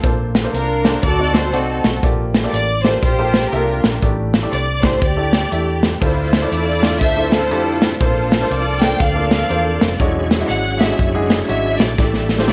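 A clear, lush string section carries the melody from 0.5 seconds with focused vibrato and a slapback echo, sitting up front over an uptempo gospel groove at 120 BPM in D minor with a swung 4/4 feel and a solemn, soulful mood. A woody upright piano comps beside a dark, round hollow-body electric bass and a natural country drum kit with a punchy kick and medium-tuned snare, while a bright, shouting tonewheel organ with slow rotary speaker, light overdrive and chorus vibrato joins in the background at 6.0 seconds. The chords move through rich extended harmonies like Bbmaj9, Gm9 and E13 in a small room with moderate plate reverb, and a drum fill closes this excerpt of a longer piece at 12.0 seconds.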